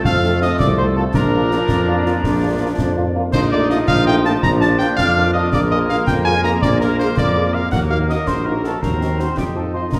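Heard from further back in a reverberant large studio with a faint mains hum, this rousing, festive military-style march for wind band moves at 109 BPM in 6/8 in Bb major, with a lightly vibrant cornet carrying the melody over a soft-attacked tuba bass set up front, a hollow wooden piccolo and a smooth-topped woodwind section playing a second line in the background, a clear, vintage-sounding trombone section holding sustained chords, a distant, roomy French horn section supplying accompaniment, and concert snare drum, concert bass drum and dark clash cymbals keeping time.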